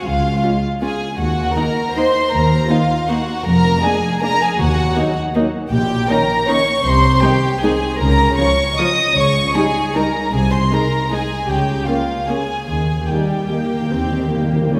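Sweeping and elegant, this classical ballroom waltz in 3/4 moves at 140-170 BPM with a supple rubato feel, cut from a longer piece. Two chamber violin sections carry the music, the melody sitting up front from F5 to Eb6 while a second line lies an octave lower, both bowed sul tasto with soft attacks and light vibrato for an intimate, close tone. Beneath them, a dark, smooth-topped double bass section and cello section share the bass. At 0.4 seconds a viola section with fuller vibrato enters to fill in the accompaniment from the background, alongside a warm French horn section holding sustained chords. The harmony drifts from Db through Ebm and Bb7/F into a cycle of Ab/C, Bbm/Db and Eb7 before arriving on Eb. Very quiet timpani struck with hard mallets on calf heads sound a brief articulate note at 4.6 seconds and return for a fill from 12.7 seconds to the close. A wet church reverb with a long 3.0-second tail surrounds the ensemble, lending the dance a spacious, hall-like glow.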